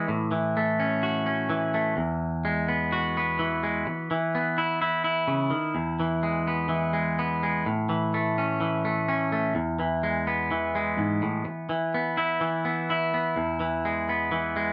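A bright, twangy clean electric guitar plays alone and up front for the whole 14.7 seconds, its picked lines spanning E2 to F#4 in a carefree highlife groove with a straight 4/4 feel. The guitar moves through a sunny progression of A, Eadd9 and Bsus4 chords resolving to E, with a short opening passage giving way to a longer second section at 5.7 seconds. A light reverb adds a touch of space to this fragment of a longer piece.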